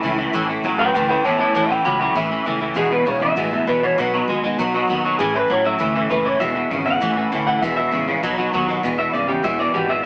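Heard through a small speaker with light reverb, this rollicking, upbeat rockabilly excerpt drives along in a straight 4/4 at 198 BPM in E major. Up front, an electric guitar through a small old amp carries the melody with a bright, slightly broken-up tone and tape echo, and a clean guitar solo runs until 8.8 s, where a new section begins. A second electric guitar plays a twangy low riff thickened by ensemble chorus, a picked jumbo steel-string acoustic guitar adds full-bodied accompaniment, and a woody, gut-strung upright bass plays a thumpy pizzicato line underneath.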